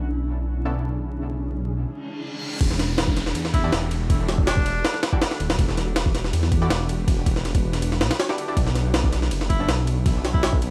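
Drum and bass with a jungle edge at 161 BPM in E dorian, this dark, atmospheric excerpt opens on a cloudy granular pad with vintage 12-bit sampler grit and a filter sweep over a thick, beating detuned saw bass, then a reverse cymbal and downlifter lead into the drop at 2.6 s, where a gritty, overdriven jungle sampler-style kit with a thumpy kick and high-tuned snare pushes up front, nasal orchestra-hit-like stabs ring out with dub echo, and a breathy, whispered tenor saxophone drifts in with vibrato and scooped notes, all under a layer of vinyl crackle as the chords move from Bm11 to Em11 and back.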